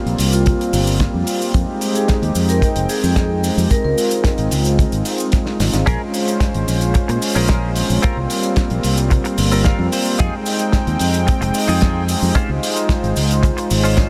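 A straight 4/4 groove at 111 BPM, built on a dry, tight kick up front and a damped 70s kit of cabasa, hi-hat and medium-tuned snare with a rolled-off top, drives this sleek, cosmic nu-disco excerpt in F minor, where a fingered electric bass with tube saturation and a smooth, detuned sawtooth analog pad with chorus and delay both pump with sidechain, a dark, ringing vibraphone with slow motor vibrato floats in the background until 4.2 seconds, and a bright, twangy, direct-recorded clean electric guitar plays a compressed, picked riff from 5.9 seconds with a fill at 9.4 seconds, set in a light small-room ambience.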